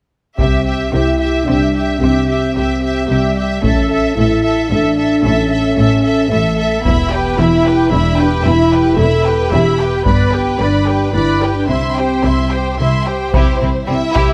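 Dark French horns hold sustained chords at the front of this triumphant, heroic orchestral film cue in 3/4 at 111 BPM in C major, with taiko drums struck with hard sticks, lush bowed violins carrying a soft-attack vibrato melody over a focused second violin line, clear violas, and expressive cellos with smooth double basses anchoring the bass, all in a concert hall reverb with close, detailed presence through the C, A, Em, G progression.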